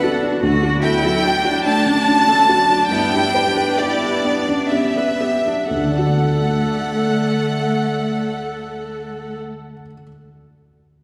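In a rubato three-beat lilt that slows over the first 5.7 seconds, this intimate, hopeful piece of neoclassical piano and strings moves gently from D to G and back to D. A chamber violin section carries the melody up front, with vibrato, a soft attack and a sul tasto tone that keeps it close and tender. A single cello sings a smooth-topped second line beneath it, while one viola fills in the accompaniment with light vibrato and an airy bow. A felt-muted upright piano adds a dark, mellow accompaniment with short sustain and audible action noise, and it carries on alone after the strings stop at 9.4 seconds, ringing until 11.0 seconds. In the background, a warbly, lo-fi tape-like pad holds nostalgic sustained chords, colored by chorus and its own reverb. The ensemble sounds heard from further back in a wet concert hall, in a passage cut from a longer work.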